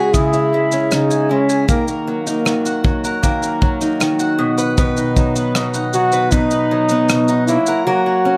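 An unhurried 78 BPM in straight 4/4 sets the pace for this easy-going, carefree acoustic pop excerpt in B major, cut from a longer piece. A clear trombone carries the melody up front in a pop style, singing between A#3 and F#4 with light vibrato and scooped notes. Beneath it, a picked acoustic archtop guitar gives warm, up-front accompaniment, while a mellow mandolin, sitting lower in the mix, adds round double-string arpeggios. A modern studio drum kit enters at 0.1 s and stops at 7.8 s, its punchy kick, rim click and shaker sounding mid-forward and close. The harmony moves from C#m to D#m, settles on B at 4.4 s and turns to F# near the end, all within a moderate studio ambience.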